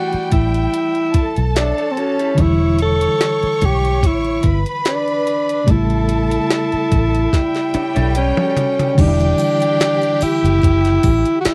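A breathy tenor saxophone carries the melody up front over a lush violin section and a reedy, lightly overdriven electric piano with fast tremolo, joined at once by a round, foam-muted electric bass and a gritty, pitched-up sampler-style drum kit, in this smooth, cinematic 1970s-style soul excerpt at 73 BPM in E dorian, where a twangy electric guitar riff surfaces in the background at 1.6 and 7.7 seconds, a drum fill leads into the Em9 chord at 9.0 seconds, and a shimmering triangle enters there, all in a dry, close studio sound.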